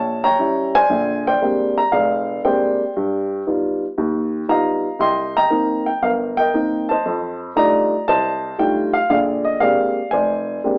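Heard through an AM-radio filter with a moderate club reverb, this relaxed solo jazz fragment, cut from a longer piece, has a dark, woody upright piano sitting up front and swinging its eighths across a span from F1 to C6, moving from Edim7 through Bb13, G7alt, Cm7 and F13 before settling back on Bb13 at 9.1 seconds.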